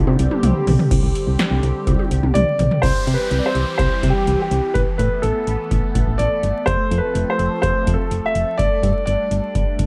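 A straight 4/4 electro drum machine, with a deep kick, punchy snare and metallic hats roughened by 12-bit grit and gated reverb, opens with a fill and drives this nostalgic, wistful synth-pop piece. Beneath it, a round, dark FM bass and a swirling, detuned sawtooth pad treated with phaser and chorus are already sounding from the very first moment. A present, polished grand piano carries the melody from 2.3 seconds, and an electronic downlifter passes through from 2.8 to 6.7 seconds as the chords move from Csus2 through C, Asus2, F and Gsus2, all wrapped in light reverb and a layer of vinyl crackle.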